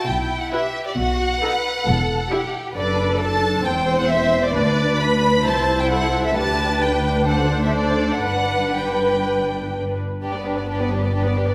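A quick, graceful and spirited classical-period movement for string orchestra, cut from a longer piece and played with a flexible, rubato feel. An up-front, rich violin section carries the expressive melody with vibrato and a soft attack, while a clear, focused second violin line and a lush viola accompaniment (entering at 0.5 s) fill the middle. A warm, smooth cello section and a warm, expressive double bass section anchor the bass from 0.1 s, all set in the lingering reverb of a scoring stage before a new section begins at 10.2 s.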